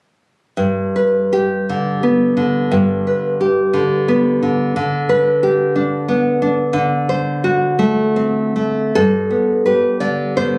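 A solo nylon-string guitar enters at 0.6 s, fingerpicked and up front, with a full-bodied, deep classical tone. This romantic piece moves in a gentle three-beat metre with a rubato feel, and its mood is nostalgic and sunny. The guitar ranges from G2 up to D5, settling on a G chord before shifting over a D bass and then leaning into D7. At 9.0 s a new section begins as the harmony returns home to G, and the guitar plays on until 10.6 s. The sound is close and fairly dry, captured on a phone in the room with compression and a light club reverb, and the passage is cut from a longer piece.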